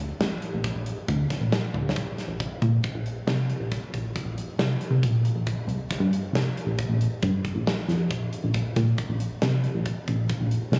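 Driving and intricate, this progressive instrumental cut from a longer piece moves at 137 BPM in an uneven 7/4 with a straight feel, set in Bb major and tuned to A4 = 438 Hz. A plucky analog bass opens at 0.0 s, its punchy, funky tone built from sawtooth and pulse waves with a filter pluck, a moving notch, a fast attack and a dark, decaying edge, ranging from A1 to C3. At 0.2 s a huge arena drum kit joins with hi-hat, kick, snare and toms, sounding acoustic and hall-like, with a medium-tuned snare and a punchy kick placed up front. A drum fill arrives at 1.7 s. The recording has the character of a phone capture in the room, with club reverb and compression over a fairly dry overall space.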